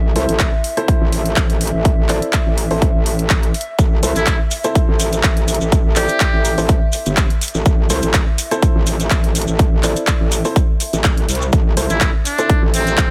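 A metallic wobble bass and a warbling, nostalgic pad open this bouncy, gritty bass house excerpt. The saturated bass sits up front, while the detuned, lo-fi pad stays in the background with chorus, phaser and its own reverb, and both pump to the sidechain. Moments later a baby grand piano adds short, intimate stabs with audible action noise and delay, and an overdriven dance kit of handclaps and hi-hat arrives alongside a punchy electronic kick placed firmly in front. The groove carries a light swing on the sixteenths and rests on a single chord throughout. Grainy maracas join quietly at 3.8 seconds, and at 4.2 seconds a trumpet with a metal mute plays a buzzy, breathy jazz solo with light vibrato, scooped notes and delay, returning briefly near the end at 11.9 seconds.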